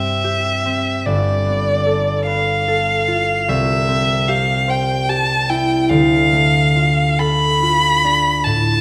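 A rich, focused bowed violin and a bright, ringing fingerpicked concert harp begin together in this warm, lyrical romantic duo, set in C major in a rubato 12/8 at about 49 beats per minute. The violin sings the melody up front with vibrato, while the harp supplies the accompaniment across a deep range, moving through C, G9, C and Dm. Both sit close in a wet recital hall reverb with a 1.6 second decay, and this excerpt of a longer piece lasts about 8.8 seconds.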